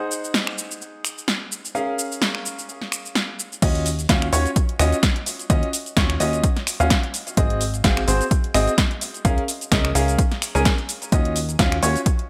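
Piano house at 128 BPM in 4/4 with a light 16th-note swing, set in Eb dorian with a bittersweet yet energetic mood, taken from a longer piece. A clear, boxy concert grand piano carries the riff from the start, up front with short sustain, sidechain pumping and digital delay, moving through Ab7, Db6 and Ebm9 chords. A punchy analog drum machine with overdrive brings crash cymbal, finger snaps, hi-hat, shaker and snare almost immediately. At 3.6 seconds the drop arrives as an overdriven electronic kick drum and a plucky, funky analog bass enter together, the bass detuned and wave-folded with a fast attack, tube saturation and sidechain pumping. Light reverb and digital ambience frame a bright 1980s-style digital production.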